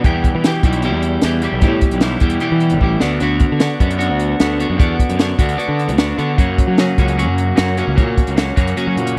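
A straight 4/4 pulse at 151 BPM drives this moody, bittersweet indie rock excerpt in B minor, where a compact cocktail drum kit with a high-tuned snare and punchy kick adds a fill at 2.8 seconds, a double-tracked, compressed overdriven electric guitar riff moves from Em through Bm/D to F#, and a growly, bright fuzz picked electric bass joins at 0.1 seconds, all three parts up front in a dry, close 1970s-style studio sound.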